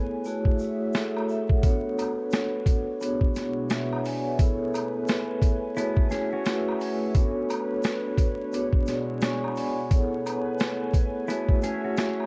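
A swung 87 BPM groove in 4/4 sets this mellow, cosy lo-fi hip hop piece rolling in A major, with a compressed, pitched-down boom bap sampler-style drum kit coming in at 0.5 seconds, up front with a thumpy kick, a high-tuned snare and hi-hat that sound gritty and tape-warm. A vibraphone played with soft mallets carries the accompaniment, its metallic, ringing tone and slow motor vibrato sitting close in a boxy small room, while a dark, detuned, warbling pad underneath holds nostalgic, vintage chords with chorus and its own reverb. Tube shaker and woodblock add acoustic texture from a distant, large room in the background. A clean, fingered electric guitar slips in briefly at 5.8 seconds and again at 11.3 seconds as a second line, its shadowy tone trailed by tape echo. The chords cycle through F#m9/A, Bm9, E13/B and Amaj9 under light reverb and a constant bed of vinyl crackle, in a short passage cut from a longer piece.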